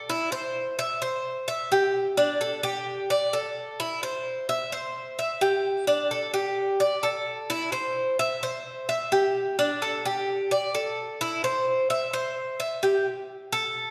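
Latin excerpt at 130 BPM in a straight 4/4, warm and danceable, featuring a solo Cuban tres playing from 0.0 to 13.9 seconds between D4 and E5. The picked acoustic tres sits up front with a bright, metallic ring from its doubled strings, some of them octave-doubled. A wet concert-hall reverb with a 1.8-second decay surrounds it, giving the sound of a church or concert hall.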